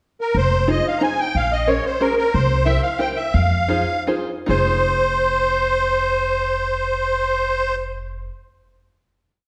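A reedy, shimmering musette accordion opens this nostalgic, bittersweet musette waltz in F minor with a pickup at 0.2 s, spinning a motif-based melody in sentence-like phrases at 142-184 BPM in 3/4. Beneath it, a woody, thumpy pizzicato upright bass on gut strings sits up front with root and fifth on the main beats, while a fingerpicked open-back banjo adds plunky, twangy backbeat chords in close voicing. The tempo slows from 2.3 s, and the short piece settles onto a final chord at 4.5 s, ringing in a reverberant recital hall.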